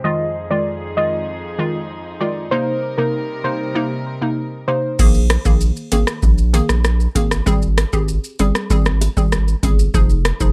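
A booming analog drum machine with a deep kick and metallic hats, set up front with the air of a large room, drives this sultry, tough dancehall excerpt in F minor at 97 BPM from 5.0 seconds, joined by a thick, saturated sub bass and very quiet, high-tuned bongos. Before that, a soft, round pluck carries the melody with chorus and tape echo until 4.8 seconds, while a string section with light vibrato and a reedy gut-string tone holds sustained chords under sidechain pumping. A hollow, bouncy square-wave pluck with detuning and ring modulation plays accompaniment throughout, over chords moving from Fm7 through Cm7, Bb7sus4 and Abmaj7 in a dark, dry production.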